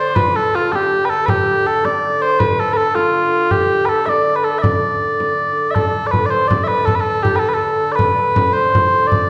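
Mellow, sweet small bagpipes carry a continuous solo melody up front over a dark, nasal, reedy hurdy-gurdy drone on D, with a close acoustic frame drum joining at 0.2 seconds. This short cut from a longer medieval dance in D dorian moves at 107 BPM in a straight 6/8, tuned to A4 = 438 Hz, and feels ancient and driving. The tune shifts into a second section at 5.8 seconds, and the whole ensemble sits in the wet reverb of a recital hall.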